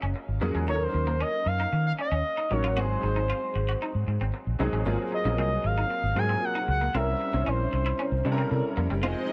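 Set in a small room with light reverb, this upbeat, urban pop excerpt moves at 115 BPM in a straight 4/4, built on rich jazzy chords that open on Gbmaj9 and later reach C7b9. A dark, punchy, foam-muted fingered bass with tube saturation sits up front beside a warm grand piano carrying the accompaniment, while a bright, twangy picked electric guitar plays a riff, both piano and guitar treated with ensemble chorus. From 0.7 seconds a smooth, expressive sawtooth lead sings the melody with portamento, vibrato, chorus and tape echo, and at 9.0 seconds a distant, lush bowed string section adds sustained chords just before the cut.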